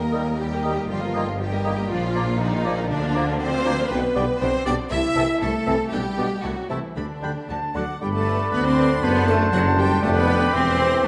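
A warm solo oboe sings a second line beside a smooth violin section in this mischievous, whimsical film cue at 119 BPM in 2/4, cut from a longer piece, with a rich, expressive violin melody sitting further back and a bright, very quiet clarinet and an airy concert flute adding more lines. Violas, a close-miked bassoon and a French horn section fill in the harmony, while a mellow tuba, lush cellos and focused double basses carry the bass. The cue opens in Eb major, moves to G major at 3.9 s, and closes on a brief new section from 8.0 s, all set in a wet scoring-stage reverb.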